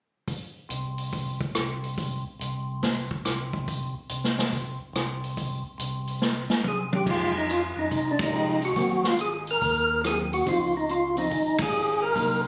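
Captured on a phone in a moderate club room, this soulful, late-night soul jazz organ trio excerpt swings at 141 BPM in F minor. An up-front acoustic big-band drum kit, with a punchy kick, medium-tuned snare, hi-hat, ride, crash, rim clicks and toms, drives it from the start beneath a piping, scooped tonewheel organ bass line carrying light overdrive, chorus vibrato and key click. During a drum fill, a fat, percussive tonewheel organ melody with third-harmonic percussion arrives at 6.7 seconds through a slow rotary speaker, and a dark, clean hollow-body electric guitar adds fingered accompaniment from 7.1 seconds as the harmony moves through Fm9, Ab9 and Dbmaj9, punctuated by band accents.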